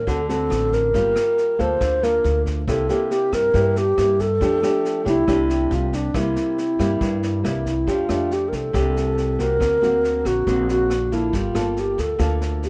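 A breathy, mellow wooden-headed alto flute sings a tongued, straight-toned melody up front from the first moment, over a dark, thumb-plucked nylon-string guitar and a woody pizzicato upright bass, with a vintage brush drum kit of punchy kick, rim click and snare joining at 0.1 s in a natural small room, forming a relaxed, breezy bossa nova in F major at 139 BPM whose light reverb and chords drifting through Gm9, C7, F69 and D7alt mark a passage cut from a longer piece.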